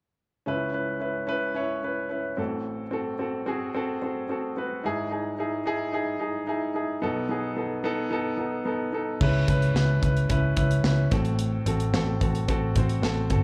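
A clear, polished baby grand piano sits up front from 0.5 seconds, carrying this uplifting, piano-driven pop excerpt at 110 BPM in a straight 4/4, its chords touched by a slapback echo. The piano moves through C#m7, Am6, Emaj7/G# and B7, ranging from deep G#1 up to C#5. At 9.2 seconds a muted, picked electric bass with a dark, round, amped tone joins alongside an acoustic drum kit of kick, snare, hi-hat and crash. The drums are mid-forward with a punchy kick and a rolled-off top, and the bass stays low between G1 and C#2 as the C#m7 and Am6 chords return. The whole piece has the feel of a live club gig heard through the venue's sound system, with light reverb and a small-room ambience giving it a warm, intimate glow.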